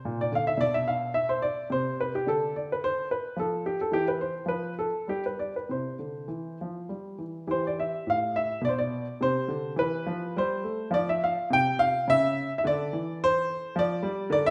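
A present, up-front baby grand piano with a short sustain plays alone in this radiant, dance-like baroque-style suite movement in C major, moving in a rubato 3/4 at 97-111 BPM through chords such as Bb, Bdim and C before a second section from 7.5 s brings A7(no3), Cadd11 and Dm, all set in a moderate recital hall reverb within a brief cut from a longer piece.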